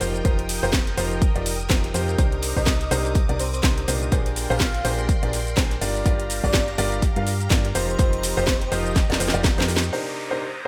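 A bright, 1980s-style digital production with light studio reverb frames this soulful, energetic piano house excerpt in C minor at 124 BPM, swung on the sixteenths and moving through chords like F9sus4, Cm9, Bb13 and Gm7. A clear, short-sustain grand piano riff with delay pumps against a punchy, round FM bass, a layered electronic kick and an up-front house kit with cracking snare, metallic filtered hats and shaker, while shimmering sawtooth string-machine chords sit in the background. From 2.2 seconds a very quiet acoustic soul kit adds a dark, smooth snare, and from 2.6 seconds an airy, dreamy lead with chorus and vibrato floats softly in the background. After a drum fill, an electronic downlifter closes the passage from 9.9 seconds.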